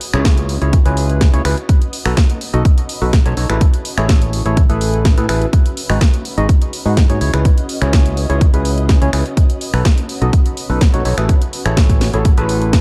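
Piano house with a euphoric, uplifting mood, cut from a longer piece and built on a steady, straight pulse. A punchy, tape-warm electronic kick sits up front alongside a house kit of finger snaps, hi-hat and a cracking snare that carries the sheen of being re-recorded in a large room. A bright, growly fingered electric bass anchors the low end, pumping against the kick, while a hollow, percussive organ stab with a fast attack and decaying tail plays the riff, colored by subtle chorus and a digital delay. In the background, a cloudy, detuned granular pad drifts and blurs with its own reverb, breathing along with the sidechain. The chords cycle from C#m7 through B7 and F#m11/A to G#m7 and back, and the production overall feels dark and warm, with little added room reverb.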